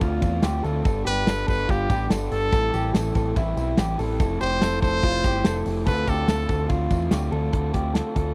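Breezy and bright, this short cut from a longer jangly indie pop piece moves at 144 BPM in a straight 4/4, cycling through Dm7, G, Am7 and Fmaj7 before returning to Dm7. A punchy trumpet carries the melody from 1.1 to 6.7 seconds, bright and present with a pop-style vibrato, sitting up front like a soloist. Underneath, a raw garage guitar lays down a picked, overdriven accompaniment while a second electric guitar, dark and slightly broken-up through a small old amp, picks lo-fi arpeggios. A deep dub bass, round and direct, anchors the low end alongside an acoustic studio drum kit of kick, snare, hi-hat and ride, its mid-forward sound marked by a punchy kick and a rolled-off top. A jingly tambourine sits in the background until 7.2 seconds, and the whole thing has the dry, close feel of a 1970s studio with little reverb.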